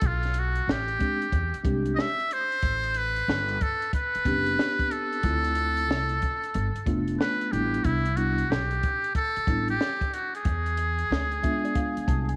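Nocturnal and smoky, this swung jazz-hop excerpt puts a buzzy, metal-muted trumpet up front, its thin, vibrato-laden solo line carrying a tape echo over a chord cycle of rich minor and altered dominant harmonies. Beneath it, a woody, thumpy pizzicato upright bass on gut strings and a compact cocktail kit with a punchy kick, high-tuned snare and rolled-off top hold the groove, while a mellow, clean tine electric piano enters at 1.0 seconds and closes with a fill from 11.1 seconds. Light studio reverb and a prominent layer of vinyl crackle give the whole a dusty, late-night haze.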